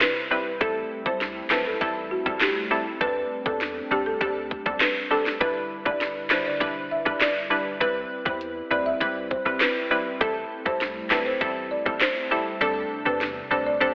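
Hypnotic and sultry, this dancehall fragment from a longer piece moves at 100 BPM in a straight 4/4, cycling through Cmaj7, Am7, D7sus4 and Em7. A woody, close-miked folk marimba played with medium mallets carries the melody, its rustic hardwood tone set in a diffuse ambient delay. Up front, a hollow, bouncy square-wave pluck with ring modulation and a filter sweep supplies bright, detuned accompaniment, while a soft, flute-like pad holds nasal, mellow chords beneath it; both pump against the sidechain. The electronic island pop drum kit sits forward with a tight kick, sharp snare, dark hats, handclaps and rim clicks. A barely audible downlifter opens the track before a deep, punchy sine sub bass enters at 0.6 seconds, and the kick drops out at 12.6 seconds. The whole mix is dreamy and soaked in a lush hall reverb, filtered through a telephone-like sound.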